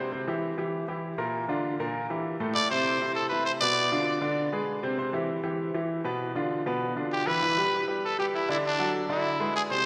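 Latin excerpt in C major at a brisk 197 BPM, danceable and joyful, where a woody, intimate upright piano with audible action noise and long sustain carries the accompaniment throughout, while a raspy, growling trumpet with light vibrato steps up front for short solo melody phrases at 2.5 s and 7.1 s, all bathed in the lingering reverb of a church or concert hall.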